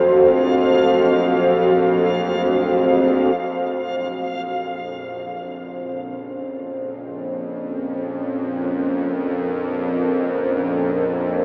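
Floating in free time, this dark ambient drone fragment in Bb harmonic minor, tuned to A4 = 444 Hz, feels unsettling and shadowy from its first moment. A deep, moody pad holds sustained chords across the middle register, its detuned sawtooth layers, sub octave and moving notch softened by chorus, shifting from Gbm to Bbm at 3.4 seconds. Beneath it, a tense, string-like drone sits low and up front, bright and edged with a noise layer and vibrato. For the opening 3.4 seconds a dreamy, reversed texture of granular triangle tones hovers high on a single F, swelling before it drops away. From 3.4 seconds on, both the drone and the pad fade in as the harmony settles onto Bbm. The whole excerpt is bathed in a huge, wet reverb and filtered to a thin AM-radio sound, lending it a distant, haunted quality.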